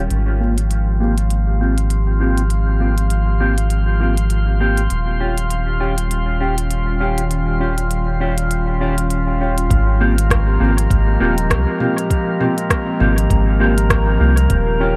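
A swung 100 BPM 4/4 groove of crisp hats, rim clicks and toms with dub echo carries this hazy, spacious ambient dub excerpt, where a deep, round sub bass sits up front under a warbling, nostalgic pad of detuned sustained chords moving from Abmaj13 to Eb9, a drifting glassy texture of chorused overtones, and dark, clean electric guitar stabs soaked in lush chorus and echo and swept by a filter until a soft, tape-toned electronic kick enters at 9.7 seconds.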